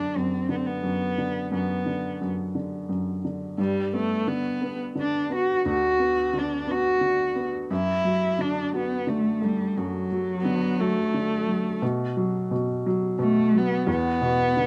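A dark, bowed cello carries an intimate, heartbroken melody with vibrato and portamento over a woody, boxy upright piano whose action noise is audible, while a rich, smooth viola adds a brief second line at 3.6 and 10.4 seconds in this slow 6/8 acoustic folk-pop ballad at 58 BPM, moving from Bm/F# through Gmaj7 and D/F# before a shift to B5 at 11.8 seconds and E7(no3) at 13.9 seconds, all set up front in light reverb.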